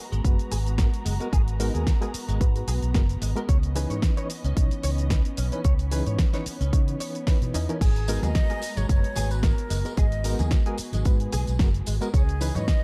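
A dark, lush string section opens this sensual, sleek nu-disco excerpt in G# minor at 111 BPM, sustaining G#m9 and C#m9 chords under sidechain pumping. Almost at once a punchy electronic kick sits up front alongside a fat-snared pop kit with shaker and crash, a bright, tube-saturated envelope-filtered fingered bass, a clean, compressed direct guitar riff with chorus, 12-bit grit and dub echo in the background, and a reedy electric piano with fast tremolo and pumping. At 7.8 seconds a breathy, close-miked silver flute takes the melody with delay, while ringing tambourine and soft-handed congas join in the background, all in a dark, warm production.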